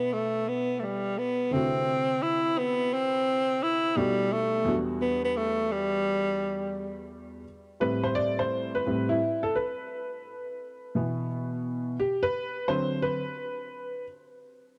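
A breathy, subtoned tenor saxophone with light vibrato and scooped notes carries the jazz-style melody up front until 7.1 seconds over a worn, woody, slightly detuned upright piano, which then takes a solo from 7.5 seconds in this mellow, nocturnal swung hip hop excerpt, all bathed in a moderate plate reverb with a dark, warm production.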